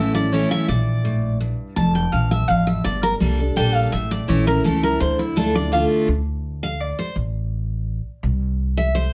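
Heard from further back in a reverberant studio room, this driving, rustic bluegrass excerpt in D minor moves at 167 BPM in 3/4, with a bright, fresh-stringed dreadnought guitar picking the melody until 5.8 s over a second full-bodied picked dreadnought whose finger squeaks show through its accompaniment, while a woody, thumpy pizzicato upright bass on gut strings anchors the low end.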